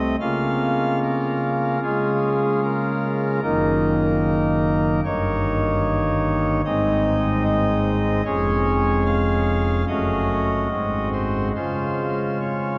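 A dark, soft-edged recording sits in a vast cathedral space, its long reverb tail of about 6.5 seconds blurring each chord into the next, with the top end rolled off so the sound stays mellow and enveloping. This is a short cut from a longer classical piece in chorale style, moving at 74 BPM in a straight 4/4 in D-flat major, tuned slightly low to A4 = 438 Hz. A pipe organ plays alone throughout, voiced on a cornet solo stop with a nasal color and a romantic character, placed up front against the echoing hall. The part spans a broad range from deep F1 up to F5, giving the harmony weight beneath the upper line. The chords move in measured, hymn-like steps through inversions such as Bbm/Db and Eb7/G, reaching a half-diminished Ebm7b5/Gb and an Ab7 before settling home on D-flat at 11.5 seconds. The mood is majestic yet serene, a stately progression heard in a resonant sacred space.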